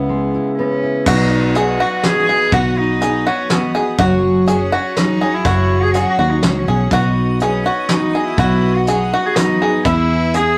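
Anthemic and warm, this 3/4 indie folk passage at 123 BPM in B major opens with a soft-attack bowed cello melody floating over a round, dark fingered electric bass and an up-front fingerpicked steel-string acoustic guitar, whose finger squeak is heard until 2.5 s. At 1.1 s the arrangement builds as several parts join: a shimmering, octave-doubled twelve-string guitar, a twangy, percussive banjo playing arpeggios, a soft brush drum kit with a fat snare and punchy kick, and a distant chamber string section holding light-vibrato chords in the background. The rough rehearsal-room sound carries moderate ambience and a faint mains hum, and the excerpt is cut from a longer piece.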